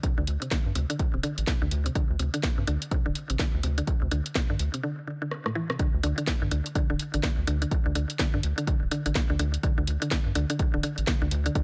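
Minimal techno with a clinical, cool mood and a 16th-note swing, where a woody, round mallet-like synth pluck with chorus, delay and sidechain pumping plays a riff up front over a punchy analog kick, a garage drum kit of cracking snare, rim click and hi-hats, and a rubbery, hollow square bass with sidechain pumping, all in a dry mix that breaks at 4.8 seconds, rolls through a drum fill and drops at 5.8 seconds in this excerpt from a longer piece.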